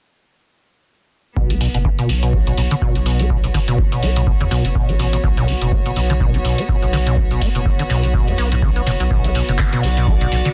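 A gritty, hypnotic acid house excerpt in B minor at 124 BPM with a 16th-note swing begins at 1.4 seconds as a squelchy, resonant sawtooth acid bass riff with overdrive, analog chorus, dub echo and a filter sweep rides over a thick, saturated sine sub bass and a deep, tape-warm electronic kick, joined at 1.5 seconds by a booming analog drum machine's handclaps and metallic hi-hats, while an earthy chamber string section with light vibrato pumps to the sidechain beneath, all in light reverb under a dense, heavily limited master until 10.5 seconds.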